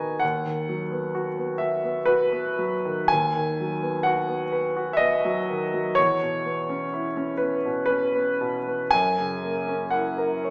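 A romantic classical nocturne for solo piano, this brief passage drifts at 62 BPM in 3/4 with uneven, rubato beats that give it a dreamy, tender mood. A grand piano carries everything alone, its tone warm and present with long sustain, placed up front and spanning D#2 to A#5. The harmony moves from B/D# at 0.2 seconds to C#m7/E at 6.0 seconds and then F#7 at 8.9 seconds, settling in B major from 3.1 seconds. A wet recital hall reverb with a 1.7-second decay surrounds the instrument, though the overall sound has a small-speaker quality. Cut from a longer piece, it runs 10.5 seconds as a single unbroken section.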